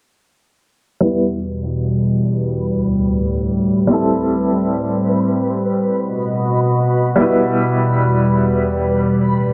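This trip hop fragment, cut from a longer piece, moves at a slow 73 BPM in 4/4 with a light swing on the sixteenths, settling into a brooding, melancholic mood in E minor. A bright upright piano carries the accompaniment from 1.0 seconds, its woody, brilliant tone colored by tremolo, tape echo and a low-pass filter that sweeps across the whole passage. Alongside it, a warbling, tape-like pad holds sustained chords with a slow attack and long release, its detuned, lo-fi character thickened by chorus and giving the sound a nostalgic haze. A reversed, swelling texture sits quietly on a single high note, adding a dreamy, granular shimmer. The harmony steps through Em, Dsus4, Am7 and B before returning to Em at 7.6 seconds, all set in a small, moderately reverberant room with a dulled top end.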